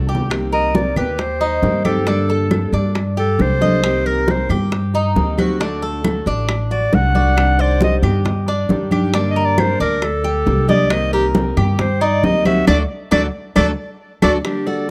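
Nostalgic and warm, this excerpt of Cuban son and guajira at 136 BPM is led by an up-front, close-miked clarinet with a clear classical tone and a touch of tape echo, soloing over chords that move between minor sevenths, G minor and D. Beneath it, a dark, thumpy upright bass sits forward, while a mellow, metallic tres plays arpeggios on its doubled strings and a fingerpicked steel-string guitar adds warm accompaniment. Round, low-tuned bongos join in, with ringing congas and woody, saturated claves set further back. The dry, close 1970s-style studio sound opens with a brief drum fill and features a band accent from 12.7 seconds, and a bright nylon-string guitar slips in at 14.4 seconds just before the cut.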